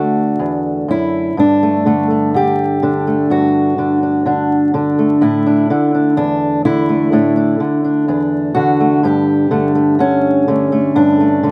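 A dry outdoor recording with a faint vinyl crackle opens onto a single fingerpicked acoustic guitar, old and ladder-braced, sitting up front. This is a peaceful, gentle folk piece for solo fingerstyle guitar, moving at a slow 63 BPM in a straight 4/4 and tuned slightly above standard pitch. The instrument has a dark, woody, boxy character, with the tone of old strings, and it ranges from D2 up to G4. A brief opening on Dadd9 gives way at 1.4 seconds to a longer passage built on suspended chords, moving from Gsus2 to Asus4 at 5.2 seconds and back to Gsus2 at 9.0 seconds. Cut from a longer piece, it runs about 11.5 seconds and feels unhurried throughout.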